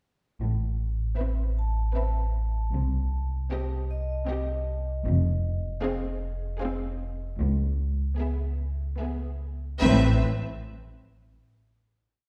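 A faint, bright vibraphone rings out sparse single notes with a slow motor vibrato from 1.6 to 7.4 seconds above lush, bowed violin and viola sections holding sustained chords, while bowed cello and double bass sections sustain the bass line over a deep, clean sine sub-bass drone. Together they shape an uneasy, eerie suspense film cue in 3/4 that moves from Amadd9 through Cm, Fm and C#m7 to a closing Am chord at 9.8 seconds, heard from further back in a reverberant scoring stage.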